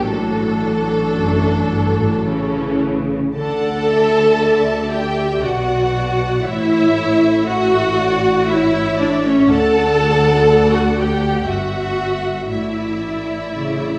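A string orchestra opens together in a slow, lyrical and serene romantic movement in 3/4 with a flexible, rubato feel. Lush, vibrato-rich violins carry the melody while a second, close violin line moves just beneath it, and an up-front, focused viola section supplies the rich accompaniment over bowed double basses and a distant, smooth cello section sitting in the background. A concert-hall reverb bathes the ensemble, and this passage, cut from a longer piece, settles onto a suspended chord at 12.5 seconds before breaking off at 14.0 seconds.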